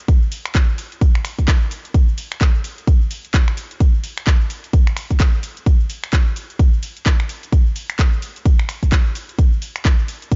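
Dark, dry and close-sounding with a small-room feel, this aggressive, bouncy house fragment cut from a longer piece runs at 129 BPM in 4/4 with a 16th-note swing, as a punchy, layered electronic kick sits up front and a quieter, layered electronic house kit of finger snaps, handclaps, warm hi-hats, ride cymbal and shaker plays alongside it from 0.1 to 10.4 seconds.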